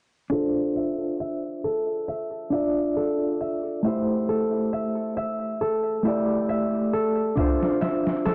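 The recording sounds blown-out and overdriven, with its top end filtered off and a light studio reverb around it. This hypnotic, cinematic trip hop passage, cut from a longer piece, sways over a gentle 16th-note swing. From 0.3 s a dark, clean, fingered electric guitar sits up front with tremolo, tape echo and a filter sweep, while a ringing, fingerpicked concert harp plays arpeggios through its own low-pass filter, echo and sweep. A triangle and egg shaker, acoustic and very quiet in a small room, join at 1.0 s as the harmony moves from Dm7 to Am7 and back. At 7.4 s a gritty, pitched-down boom bap sampler-style kit arrives up front, pairing a thumpy kick and hi-hat with a medium-tuned snare that carries soft clipping.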